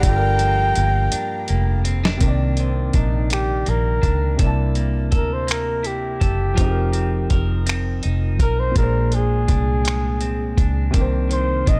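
A gritty, tape-warm drum kit opens this slow, sultry six-eight R&B excerpt in C minor at 55 BPM with a fill of snaps, hi-hat, thumpy kick and snare, over a round, foam-muted electric bass, long-sustaining baby grand piano, a slightly broken-up guitar line soaked in spring reverb, and lush, woody strings that drop out at 2.2 seconds. From there the breathy, mellow flugelhorn takes a yearning jazz-style solo with light vibrato, sitting up front through chords moving from Cm9 and C13 to F7sus4 and Bb9 before settling back on Cm9.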